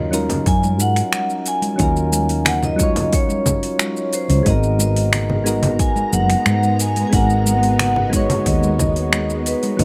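The vibraphone, struck with medium hard mallets, carries the melody with a metallic, ringing tone, a medium motor vibrato and a tape echo. This short excerpt of sunset chillout moves at 90 BPM in a straight 4/4 in G# minor, with a wistful mood as the harmony shifts from D#m9 to G#m9 at 4.5 seconds. Soft electric-piano-like synth keys supply mellow, chorused chords, while a woody fretless electric bass adds a dark, growly low end. A deep house drum kit with metallic hats, finger snaps and shaker joins at 0.1 seconds alongside background congas, and an overdriven electronic kick drum adds a deep pulse from 0.5 seconds. At 5.1 seconds a silky string machine enters with slow-attack sustained chords, warbling through its ensemble chorus, all set in light reverb and digital ambience.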